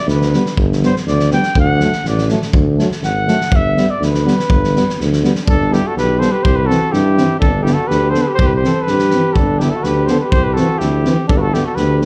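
Heard from further back in a recital hall with moderate reverb, this exuberant, festive Balkan brass band excerpt moves at 123 BPM in a straight 2/4, in G major, tuned to A4 = 437 Hz. A mellow cornet carries the melody up front and takes a solo from 0.0 to 5.5 seconds. Beneath it sit a warm tuba bass with light vibrato, a loose acoustic drum kit with a punchy kick, fat snare and rolled-off top, and, in the background, a clear, soft-attack euphonium and a smooth-topped trombone. At 5.5 seconds a distant, roomy flugelhorn adds a second line as the harmony shifts between C and G.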